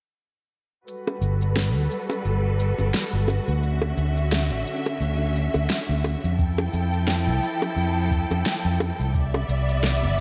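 A round, dark fingered electric bass sits up front in this smooth, blissful sunset chillout clip, holding the low end of a G major groove at 87 BPM in 4/4 with a gentle swing on the sixteenths. Above it, a lush bowed string section sustains expressive chords with vibrato and portamento, its distant studio sound shaped by a low-pass filter that sweeps across the whole passage. An electronic shaker and snare carry the beat with a fat, overdriven, layered punch, while tight, high-tuned bongos played with soft hands add a close, dry acoustic texture. At 6.4 seconds a deep, dry analog electronic kick joins in, adding weight beneath the groove. The harmony drifts through Gmaj9, Dmaj9, Fmaj9 and Cmaj9, all set in light reverb with a gentle studio ambience.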